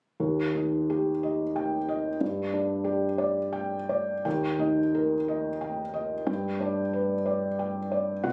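A close, intimate phone recording catches the hush of a studio room, with a touch of light reverb around a single felt-muted upright piano placed up front. This is a short passage of neoclassical minimalist piano, hopeful and tender, cut from a longer piece and lasting just over eight seconds. The piano plays alone in a lilting 6/8, its beats uneven and pushed and pulled by rubato, moving through harmonies on Eb, G5 and G. Its tone is soft and mellow, dulled by the felt, and the natural clatter of the hammers and keys can be heard beneath the notes. The music falls into two brief halves, the second beginning at 4.3 seconds, and spans from a low Eb2 up to G5.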